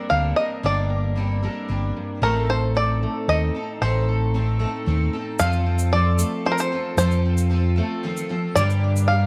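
Indie folk in a stirring, wistful 3/4 at 114 BPM, this short cut from a longer piece sets a twangy, up-front bluegrass banjo melody over a full-bodied fingerpicked steel-string guitar and a shimmering, octave-doubled twelve-string guitar dressed in lush chorus, with a round, punchy fingered electric bass anchoring the low end. Moving from Gmadd9 and Adim toward F and Gm, the arrangement builds as a grainy, bright tube shaker joins close and dry at 5.4 seconds. The whole sits in a light studio reverb.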